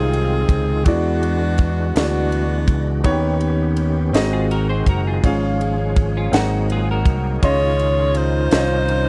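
Soulful and uplifting, this slow gospel piece in Db major moves at 55 BPM in a straight 6/8, with a tight, close-miked saxophone section carrying the melody up front, falling away at 3.0 seconds and returning at 7.4 seconds, while a clean, picked and compressed electric guitar with analog chorus plays a second line from 4.3 seconds. Underneath, a clear concert grand piano with deep bass plays accompaniment, a reedy tonewheel organ sits in the background with sustained chords, key click and fast rotary speaker, and a punchy, amped fingered electric bass joins a tight funk kit of kick, high-tuned snare and bright ride cymbal up front. Lush jazz chords such as Dbmaj9, E9 and Ebaug7 colour the harmony, and the close, dry sound carries a layer of vinyl crackle in what is cut from a longer piece.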